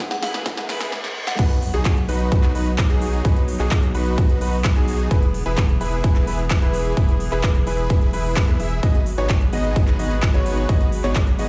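Played back through a big sound system in a bare stone room and high-pass filtered, this anthemic, uplifting slice of festival progressive house opens with a brief build-up, where a drum fill, a very quiet riser, reverse cymbal and sub drop, a glassy, crystalline FM bell and a faint, slightly broken-up electric guitar lead toward the drop at 1.4 seconds. From there a punchy, up-front electronic kick and a tape-warm dance kit with crisp hats, handclaps and crash drive a huge, detuned supersaw riff with delay and a deep, saturated sub bass, both pumping against the kick. Behind them a reedy, gut-string chamber ensemble holds sustained chords in the background, while a clear concert grand piano, entering at the drop, spins delayed arpeggios over the E, B and G#m7 changes.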